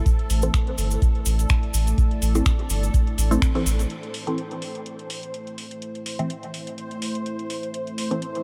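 A 125 BPM dub techno groove in 4/4 with a light 16th-note swing sets a hypnotic, nocturnal mood in A minor, cut from a longer piece. A dry, deep electronic kick sits up front alongside a booming analog drum machine with metallic hats and finger snaps, while a grainy, bright cabasa adds a small-room acoustic shimmer, the kick and cabasa both dropping out around 3.5 to 3.9 seconds. Underneath, a soft, round sub bass with tube saturation and a fast attack holds low between G1 and A1, pumping with sidechain until 3.9 seconds. A muted, detuned chord stab with a filter pluck and short decay runs through phaser and dub echo, its filter sweeping through the opening section before a band accent at 3.4 seconds. A moody, warbling pad of vintage sawtooth and sub-octave layers sustains dark chords with chorus and built-in reverb, while a bubbling, resonant texture steps randomly through its filter, both breathing with sidechain pumping over a largely dry mix.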